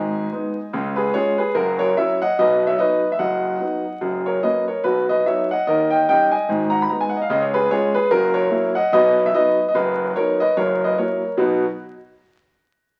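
A clear, intimate concert grand with audible action noise, deep bass and a boxy, up-front sound plays solo stride jazz in a playful, exuberant swing, its long sustain carried by a large studio reverb and the crackle of a very old 78 rpm record, in a short cut from a longer piece that resolves to B at 11.4 seconds.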